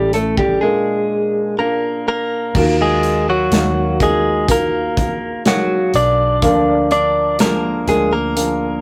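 A bright, compressed clean electric guitar carries the melody up front over soft felt-muted upright piano and a dark, round fingered bass from the opening, with a studio drum kit of bright cymbals and tight kick joining at 0.1 seconds, in this heartbroken, emotional pop ballad excerpt that moves through a break from 0.6 to 2.6 seconds before settling into a minor-key passage, all captured in a rough rehearsal room with light reverb.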